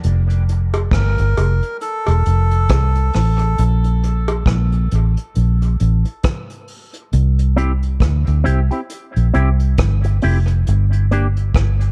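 Spacious and hazy, this slow dub reggae excerpt at 68 BPM, with a swung 16th feel in F major, rides on a round, foam-muted fingered electric bass and a dark, smooth brush kit of hi-hat, punchy kick and rim click, both sitting up front; a reedy, nasal melodica phrase and a filtered cowbell, each trailed by dub echo, appear near the start, and a clean, compressed envelope-filtered electric guitar with subtle chorus and echo enters at 7.6 seconds, all inside a small, dim-sounding room.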